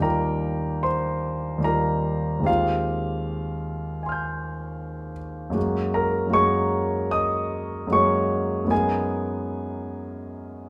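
Serene and dreamy, this short fragment of a longer impressionist classical work is played on solo piano. A concert grand carries it alone from 0.0 to 10.7 seconds, drifting in a rubato 4/4 around 72 to 81 BPM and spanning Eb2 to G6. The harmony floats through Ebadd9, Fm9/Eb, Gbadd9 and Abm9/Gb, with each chord given room to ring. The piano sits up front and sounds intimate and polished, with deep bass, long sustain and audible action noise from the instrument itself. A moderate stone room reverb with a 1.1-second decay frames the playing.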